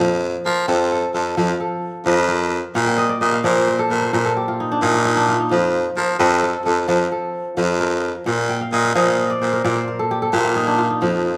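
A bright, ringing kora and a raspy baritone saxophone begin together, setting a warm, flowing West African traditional groove in a straight 12/8. The fingerpicked kora spins crisp arpeggios across the music and breaks into fills at 2.8 seconds and again at 8.5 seconds. Beneath it, the close-miked baritone saxophone carries the bass line with a gritty, punchy edge and a light vibrato, its pop-style phrasing sitting up front alongside the kora. The harmony rocks between F and Bb5, giving the short passage a gentle back-and-forth sway. The pair sound like a band playing live in one large studio, wrapped in a moderate reverb that lets the kora's notes hang in the air. The recording is cut from a longer piece.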